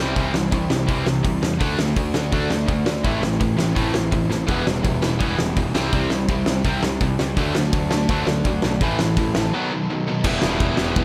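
Lightly reverberant and roomy, this aggressive, angry punk rock excerpt sets a double-tracked, compressed overdriven electric guitar riff and two bright, picked distorted guitar riffs in the background over a growly fuzz-laden electric bass. An up-front acoustic drum kit with dark cymbals, a fat snare and a tight kick comes in at 0.2 s and plays a fill at 4.3 s, and a break follows from 9.5 to 10.3 s as the C, D, Am and Em changes turn to B7 and land on Em.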